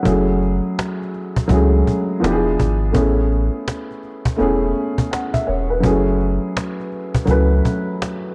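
A laid-back 4/4 groove with a sixteenth-note swing is set by a snappy, close and dry cajon with snares, while a round, sine-like sub bass sits deep and up front beneath it from 0.1 seconds. A dark, woody upright piano with a smooth vintage character carries the accompaniment through lush ninth chords, giving this short lo-fi hip hop cut a melancholic, nostalgic mood. Light reverb and the wobbly pitch drift of worn cassette tape colour the recording.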